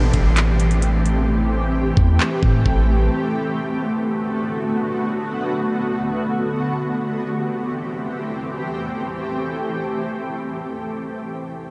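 Floating in free time, this atmospheric cloud-rap excerpt in A dorian brings in a smooth R&B drum kit from 0.1 to 2.8 seconds, its knocking kick, metallic hi-hats and handclaps roughened by vintage 12-bit sampler grit. Beneath it, a soft, round 808-style bass sits up front until 3.1 seconds, decaying darkly after each fast attack. A granular cloud pad carries sustained chords through the whole 11.0 seconds, its blurred, evolving tone thickened by ensemble chorus and breathing with sidechain pumping as the harmony moves from Am7 to Bm7 and back to Am7. In the opening moments, a barely audible fingerpicked concert harp rings out arpeggios, while a very quiet drifting glass-harmonics texture adds calm overtones and an electronic downlifter hovers in the background. The whole mix is soaked in a huge ambient reverb, leaving a spacious, ethereal haze.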